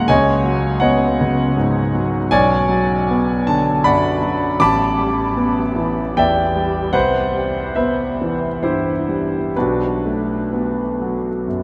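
A rubato 3/4 pulse drifting between 61 and 82 BPM carries this wistful, hazy fragment of impressionist solo piano, where a brilliant, up-front concert grand with deep bass, long sustain and audible action noise spans A1 to D6 through chords such as C#9sus4, Bmadd9, A9sus4, Cmaj7 and Bm7, all bathed in a huge, wet reverb of 7.7 seconds that evokes a vast, echoing space.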